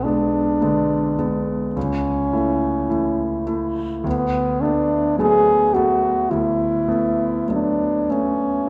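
A clear French horn sings a serene solo melody up front over an intimate, natural-sounding grand piano accompaniment whose action noise is audible, in this brief romantic classical duo at a slow, rubato 52 BPM in 4/4, tuned to A4 = 445 Hz, with harmony moving from G#dim/B to A/C# at 1.8 seconds and Bm7/D at 4.1 seconds, framed by a dark production and the lingering reverb of a recital hall.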